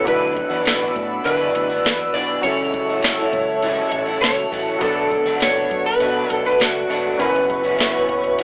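Indie and bedroom pop at 101 BPM in B minor, mellow and lonely, this brief excerpt sets a fingerpicked electric slide guitar melody, drenched in lush chorus and tape echo, over glossy, detuned retro synth keys, a bright, twangy guitar through a small old amp with chorus and vibrato, a hollow, airy pad holding chords, a dark, foam-muted fingered bass entering at 0.1 s beside a soft analog rhythm box with a deep kick and crisp snare up front, all moving through D69, F#m7/C#, Bm7 and F#7sus4 with a cassette, telephone-like home-recorded sound and a wet reverb.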